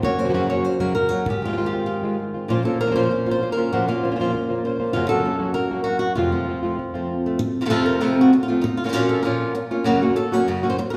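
A straight 4/4 pulse at 195 BPM drives this dramatic, intense flamenco passage in F phrygian dominant, cut from a longer piece, where an up-front, fingerpicked acoustic guitar with fresh strings carries the melody while a second warm, fingerpicked guitar punctuates with chordal stabs over shifting Gb, Ab6, Bbmadd9 and F harmony until 7.4 s, leaving the lead to play alone through the closing section, the pair set in the wet reverb of a recital hall.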